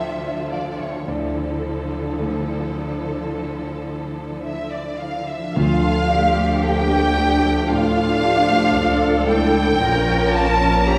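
A warm grand piano provides accompaniment in this moving, bittersweet cinematic film-score excerpt, its intimate tone carrying audible action noise and long sustain beneath a slow, rubato 4/4 pulse. From the opening, a distant, lush violin section sings the melody with expressive vibrato while a second, soft-attacked violin line sits in the background, supported by portamento-inflected violas, focused cellos on the bass, and a ringing fingerpicked harp playing arpeggios. An airy silver flute adds a second line at 4.4 seconds, and at 5.6 seconds a mellow French horn section brings tight sustained chords alongside a smooth-topped double bass section and a brief, close timpani figure played with medium mallets. The harmony rests on a Dmadd9 chord before shifting to Bbm near the end. A generous scoring-stage reverb gives the ensemble the spacious glow of a church or concert hall.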